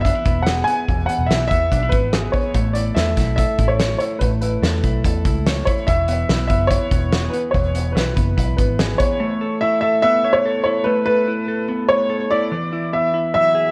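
A straight, steady four-beat pulse drives this breezy, nostalgic slice of jangly indie pop, cut from a longer piece. A loose acoustic drum kit sits up front in a small, pumping room, its fat snare and tight kick joined by hi-hat. Beneath it, a dark, round, foam-muted electric bass adds punchy, amped low notes. A clean, compressed electric guitar recorded direct picks arpeggios, while an intimate, woody upright piano carries the melody up front, with audible action noise and a slightly detuned edge. The harmony moves from E through Aadd9 and Eadd9, and by 9.2 seconds the bass and drums have dropped away, leaving piano and guitar alone until 13.7 seconds. Light reverb and the worn, warbling pitch drift of old cassette tape give the mix a faded sheen.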